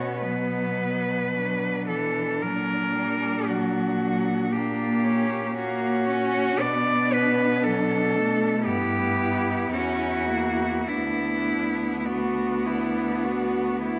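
Four cellos sound together from the first moment in this yearning, solemn classical excerpt for cello ensemble, a lyrical passage in B minor that moves slowly at 50-59 BPM in 4/4 with a flexible, rubato feel. Up front, a single clear cello carries the melody between D4 and D5, its vibrato intense. Beneath it, a second cello with a rich tone and a soft attack shapes an expressive second line, gliding between notes with portamento. A focused third cello, set more distant, supplies the inner accompaniment, while a fourth cello holds the bass with a smooth top and vibrato. The harmony moves from Bm through F#/A#, returns to Bm at 6.6 seconds, then passes through G and F#7/E before settling on Bm/D at 10.9 seconds. A reverberant concert hall surrounds the players, and the passage is cut from a longer piece.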